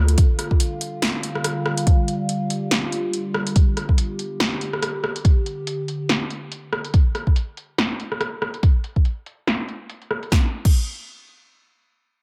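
A deep, tape-warm electronic kick sits up front in this heavy, cavernous deep dubstep excerpt at 142 BPM in a half-time, swung feel, alongside an overdriven deep house kit of punchy snare, metallic hi-hats, rim click and crash cymbal recorded in a large room and run through a filter sweep, while a resonant, wave-folded drone with moving overtones, a shifting notch and chorus sustains Dm then G chords until 6.9 s before the drums carry on alone to 10.8 s.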